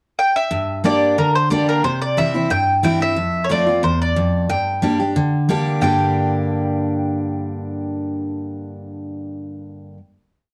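Driving yet haunting, this short, complete bluegrass piece in a straight 4/4 opens with a brief mandolin pickup, its woody, double-strung tone carrying a motif-based melody in period phrases up front, while a bright, full-bodied jumbo steel-string guitar enters at 0.5 seconds with alternating bass and strum and bass runs over a minor-key progression of Gm, C and F, all set in a dark production with moderate studio reverb before settling on a final chord at 5.8 seconds.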